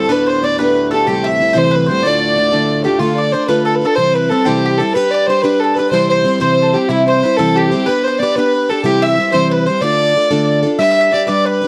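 A dark, woody fiddle with light vibrato and slapback echo leads this spirited, wild Celtic jig in 6/8 at 123 BPM, together with a reedy accordion with its own slapback echo in the background, a round, mellow mandolin on double strings, and an up-front picked plugged-in steel-string acoustic guitar, while a breathing, nasal hand-pumped harmonium drone sounds only until 3.0 seconds in this dry, close 1970s-style studio excerpt moving through G, C and Dm.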